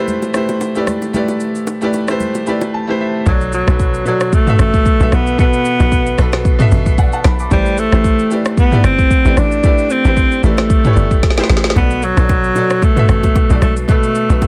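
A breathy alto saxophone carries the melody from 3.3 s, sitting up front with light vibrato and tape echo that gives it a distant, roomy glow over this deep, late-night amapiano cut taken from a longer piece. It moves at 113 BPM in 4/4 with a swung sixteenth feel in B phrygian, the harmony shifting between Am7 and Bm7. A bright grand piano with short sustain plays accompaniment throughout, and a piano fill at 2.2 s leads into the drop. There a tight, punchy log drum bass with a fast attack and decaying FM tone lands alongside the saxophone. The layered deep house drum kit stays up front from the start, with a deep kick, a woody snare given soft clipping, rim click, shaker and toms, all roughened by vintage 12-bit sampler grit, plus a drum fill at 11.2 s. Close, dry congas and bongos played with soft hands sit in the background in the opening seconds and return at 11.8 s, and the whole is dry and densely, heavily limited in a modern master.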